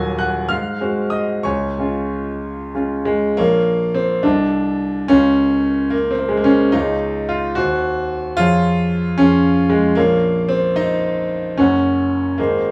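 Hopeful and lyrical, this romantic classical character piece for solo grand piano unfolds in 6/8 with free rubato, its clear, intimate, up-front tone carrying audible action noise in light reverb as a brief opening phrase gives way at 3.4 seconds to a longer passage that moves through minor and diminished colours before settling toward Gb, in a short cut from a longer work.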